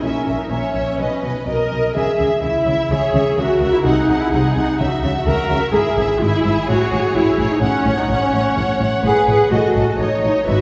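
The viola section sits up front with a warm, expressive vibrato, carrying the accompaniment through this cheerful, spirited string-orchestra movement in a quick classical-period style. Above it, a smooth, lush first violin section sings the melody, while a second violin section adds a rich line with a soft attack. A cello section with expressive portamento and a clear double bass section hold the bass under chords that move around C#m, E/G# and F#m, all bathed in a wet scoring-stage reverb that places the ensemble further back in the room.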